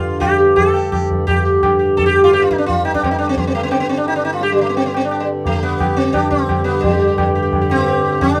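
A plucked sitar and a hand-pumped harmonium open this radiant, devotional Hindustani classical passage together, cut from a longer piece, with the tabla joining at 0.2 seconds. The sitar carries the melody between G3 and A4 in G major, its buzzing, shimmering tone ringing with sympathetic strings and sitting round and up front in the mix. Beneath it, the harmonium holds a low drone from G2 to D3, reedy and breathing, close-miked and dry with a full body. The low-tuned tabla keeps a straight 4/4 pulse at a brisk 172 BPM, its ringing strokes given a compressed, saturated edge. A moderate studio reverb frames the performance, and at 6.8 seconds the music moves into a new section before the passage closes at 8.4 seconds.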